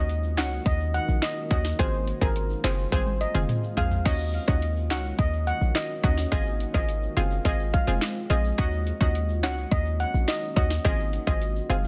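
Bouncy and tough, this dancehall excerpt at 106 BPM in Eb dorian sets a shimmering steel pan melody with tape echo over a round, detuned analog pluck, a deep, moody pad with chorus and reverb, a punchy short 808-style bass, a soft tube shaker, and an overdriven, gritty electronic drum kit up front that plays a fill from 2.9 to 4.1 seconds, all cycling between Ebm7 and Ab6 in a dense, heavily limited modern mix.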